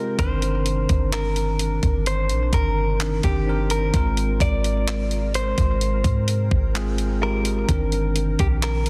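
Contemporary R&B in C minor at a slow 64 BPM, moody and sensual, where a clean, compressed direct electric guitar carries the melody through spring reverb and delay over bell-like tine electric piano chords and a glassy FM pad with ensemble chorus sitting in the background, while a deep, round 808-style bass and a thumpy, sampler-style drum machine with handclaps and hi-hat enter at 0.2 seconds up front in a dense, heavily limited modern mix moving from Cm9/G to Ab69 and back.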